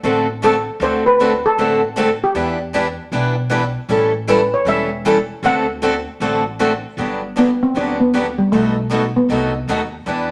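Acoustic string swing in the jazz manouche style, this short cut from a longer piece feels charming and lively, with a swung eighth-note feel in 4/4. A steel pan carries the melody from 0.4 s to 9.9 s, its tone metallic yet mellow, dark and smooth, played with medium rubber sticks and sitting up front in the mix. Two picked acoustic guitars provide the accompaniment throughout. One is a bright, up-front steel-string concert guitar, and the other is a boxy swing-style guitar with fresh strings and audible finger squeak. Beneath them, an upright bass with gut strings plays pizzicato, sounding woody and thumpy. A wet studio reverb surrounds the ensemble, and the harmony moves through D7, Em7 and A7 before shifting at 7.0 s to Gmaj7 and B7.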